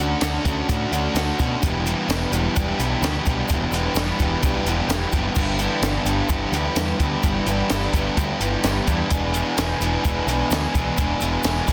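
Carefree yet wistful, this short indie rock excerpt moves at 128 BPM in a straight 4/4, cycling through Dmaj7, Em7, G6 and E7 chords. An overdriven semi-hollow guitar sits up front with a hollow-body, picked riff, while a twangy, slightly broken-up electric guitar through a small old amp plays its own riff in the background, colored by ensemble chorus and digital delay. Underneath, a growling picked electric bass adds a round, overdriven low end. From 0.2 seconds a compact cocktail drum kit joins with a punchy kick, a high-tuned snare, hi-hat, crash cymbal and tambourine, its sound dark and rolled off at the top. A grainy egg shaker also enters at 0.2 seconds and stays in the background. The whole piece sits in a small room ambience, with a dense, heavily limited modern master.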